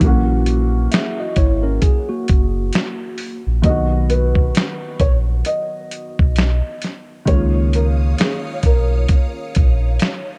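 A dusty, sampler-style soul drum kit sits up front in this short lo-fi hip hop excerpt, its thumpy kick, medium-tuned snare, hi-hat and finger snaps sounding gritty and compressed at a slow 66 BPM with a lazy sixteenth-note swing. Beneath it, a deep sine-and-triangle sub bass with an added octave holds full, sustained notes, while a dark, woody upright piano with audible action noise and a slightly detuned, boxy character plays accompaniment through cassette-tape coloring. A clean tine electric piano with analog delay adds a brief second line from 0.9 to 3.4 seconds, and then a soft, felt-muted upright piano takes the melody from 3.6 seconds, its thick-felt, vintage tone also carrying analog delay. At 7.3 seconds a lush string machine enters with sustained sawtooth chords, treated with phaser and ensemble chorus, as the harmony settles on Db69 after moving through Gb7 and Cbmaj7. The mood is nostalgic and mellow, with light reverb and a dark, warm production.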